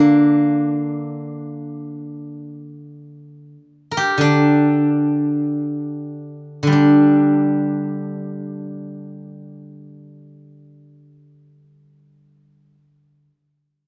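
Chinese traditional solo music in free time, contemplative and longing, featuring a single steel-string zither played with fingerpicks across the full 13.3 seconds of this fragment from a longer piece. The zither sounds silvery and ringing, placed up front by close, detailed microphones, and ranges from D3 to D5, with the opening passage slowing down through its first 6.7 seconds before a second section begins. A moderate recital hall reverb surrounds the instrument, lending a gentle sense of space.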